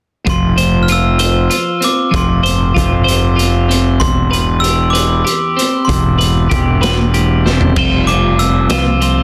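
Indie rock in an upbeat, carefree 6/8 at 64 BPM, this excerpt pairs a sparkling, bell-like glockenspiel melody struck with hard plastic mallets and touched by tape echo with a bright, twangy twelve-string electric guitar riff, an up-front round fuzz bass, and a gritty, saturated garage drum kit with a boomy kick and pumping small-room sound, moving through F5 and Cmaj7/E before a drum fill at 7.5 seconds leads into an Fsus2 section at 7.8 seconds, all within a dense, heavily limited master that carries little reverb.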